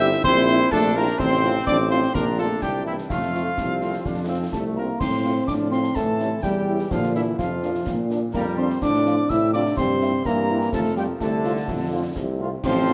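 A straight, steady two-beat pulse drives this festive, proud military-style march for wind band, a short passage cut from a longer piece. A cornet with vibrato carries the tune, present and forward, while a mellow euphonium with a smooth top and a pure, woody piccolo with tongued notes each add their own second line below and above it. A very quiet, vintage-toned French horn section fills in the accompaniment, a bright trombone section holds sustained chords in the background, and a distant, roomy tuba with vibrato anchors the bass. Concert snare drum, concert bass drum and brilliant clash cymbals keep time with an acoustic, small-room sound. The opening phrase is stated once and then begins again at 5.0 s, moving through simple major-key harmony to settle on F at 10.7 s, all bathed in a generous, wet scoring-stage reverb.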